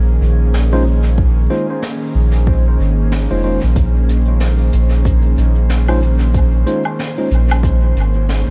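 A round, up-front dub sub bass with a touch of tube saturation anchors this deep, hazy ambient dub fragment, sitting under an airy, breathy pad with chorus that sustains a single Bbm11 chord throughout its 8.5 seconds. Jazz brushes on hi-hat, snare and woodblock drift through dub echo alongside a tape-warm electronic kick that enters at 1.2 seconds, while a clean tine electric piano scatters echoing stabs. The mix is dry, with a layer of vinyl crackle over a loose, swung pulse.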